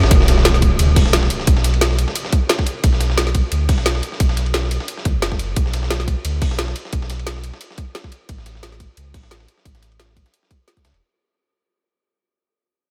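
A dreamy mix soaked in a huge ambient reverb carries this short cut from a longer liquid drum and bass piece in B minor, rolling along at 176 BPM with a soulful feel and a light swing on the 16ths. A deep, sine-like sub bass with an octave sits up front, mellow and sustained, under a tight electronic kick, a layered drum kit with a woody snare and bright hats, and a gritty, compressed sampler-style kit whose snare, hats and ride cymbal are high-pass filtered. An electronic impact sounds in the background from 0.1 to 1.5 seconds, and the whole passage fades out across its 11 seconds.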